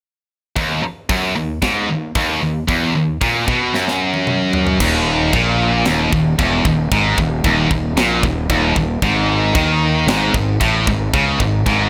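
A pair of bright, high-gain electric guitars, one of them scooped, sit up front with distorted, picked riffs in Eb minor, driving this dark, epic heavy metal excerpt at 114 BPM in a straight 4/4. A polished acoustic kit with a high-tuned snare, tight kick and bright cymbals plays throughout, and a drum fill at 3.7 seconds leads into the second section. There a growly, fuzz-overdriven fingered bass enters at 4.8 seconds beneath chords moving from Eb5 to Ab5, all in a dry mix.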